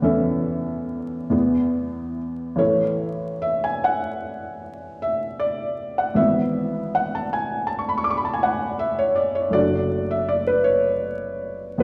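Classical romantic nocturne for solo felt-muted upright piano, serene and tender, drifting in 9/8 at a rubato 46-55 BPM in A major (tuned to A4 = 442 Hz), its mellow, intimate tone with short sustain ranging from F#1 to D6 over a progression from A/E through E and A to E/G# and D/F#, set in a wet recital-hall reverb heard from further back in the room with vinyl crackle, in an 11.8-second passage cut from a longer piece.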